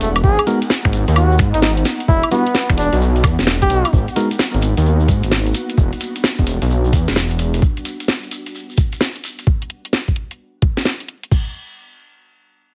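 Skippy and moody, this two-step UK garage excerpt at 130 BPM swings over G#m9 and Em9 chords, opening on a drop where a veiled bucket-muted trumpet sings a scooped, delayed solo melody until 3.9 seconds, while a tine electric piano adds clean, low-pass filtered stabs with delay. Underneath, a deep, rumbling detuned saw bass pumps with sidechain, and a very quiet ethereal pad holds airy sustained chords, both dropping out at 7.6 seconds. A gritty, thumpy, pitched-down electronic kick and an up-front garage kit of cracking snare, bright hats, finger snaps, woodblock and crash carry on to 11.4 seconds, with a grainy shekere in the background and a heavily compressed, radio-like sound in a moderate studio reverb.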